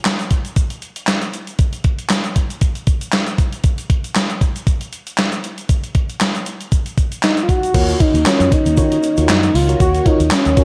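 A clean 12-bit digital drum machine sits up front from 0.1 seconds, its thumpy kick, medium-tuned snare, handclaps, hi-hat and crash carrying a tape-warm, sampler-style character, re-recorded in a large room. This smooth, feel-good slice of early-eighties boogie funk moves at 117 BPM in 4/4 with a lightly swung sixteenth-note feel, and a grainy, bright tube shaker ticks along in the background. Over an opening stretch with the drums and shaker alone, an expressive sawtooth synth lead enters at 7.2 seconds, dark and up front, with vibrato, chorus and slapback echo. At 7.7 seconds the groove settles onto a D#m7 chord as a round, punchy, foam-muted fingered electric bass arrives, joined by a mellow FM electric piano with tremolo and echo and a swirling, warbling string machine washed in ensemble chorus and phaser, both tucked behind the lead. Light digital reverb and a soft-topped, vintage sound frame this brief cut from a longer piece.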